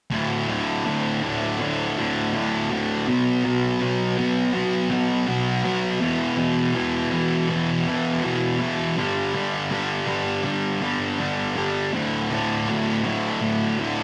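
A thick fuzz guitar carries this brooding, angsty rock excerpt entirely on its own, sounding from 0.1 seconds through to 14.0 seconds. The electric guitar is picked and double-tracked, with a bright, distorted tone that sits up front and stays in a low-to-middle register. It moves through a sequence of power chords, D5, B5, E5 and G5, before landing back on D5 at 12.0 seconds. The straight 4/4 feel gives the riff a steady, heavy trudge. A wet studio reverb surrounds the guitar, while the rough rehearsal-room sound adds a raw, unpolished edge to this fragment cut from a longer piece.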